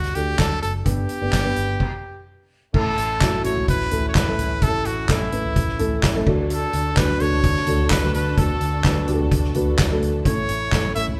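A bright, punchy trumpet carries the melody over a dark, woody upright piano, a round, foam-muted vintage bass and a soft-mallet drum kit with dark cymbals and handclaps, all in a hopeful piano-driven pop groove at 128 BPM in A mixolydian, with a stop from 1.8 to 2.7 seconds before lush, vibrato-rich strings enter in the background at 2.7 seconds, the band sounding live together in a stone room.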